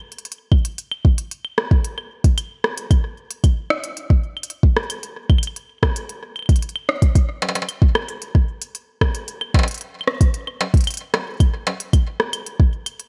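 Glitchy and intricate, this short IDM fragment, cut from a longer piece, moves at 113 BPM in a straight 4/4. An industrial drum kit of claves, crisp hi-hats, rim clicks and struck metal runs from 0.1 to 13.1 seconds, its parts coloured by studio reverb and digital delay. A soft, overdriven electronic kick enters at 0.5 seconds and sits up front, carrying its own studio reverb until 12.7 seconds. The production is dark and warm, with little room ambience around the percussion. The whole passage stays in a single section, built entirely from these two percussion parts.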